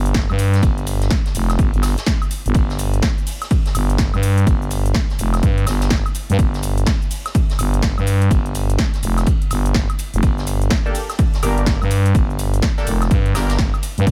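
The sound is dense and punchy, set in a studio ambience with the overdriven electronic kick and the growling FM bass pushed up front. This swaggering, gritty bass house fragment, cut from a longer piece, rides a swung sixteenth-note feel over a single minor chord. The thick, sustained FM bass carries tube saturation and sidechain pumping, sitting low under a layered beat. A big-room dance kit adds a punchy snare, metallic hats, shaker and woodblock, while a vintage acoustic kit sits in the background with a medium-tuned snare, mellow rolled-off hats and ride, and pumping, high-passed cymbals. At 10.9 seconds a nasal, band-passed sawtooth chord stab enters, detuned and bright with chorus, phaser, digital delay and its own pumping, decaying after each hit until it drops out at 13.5 seconds.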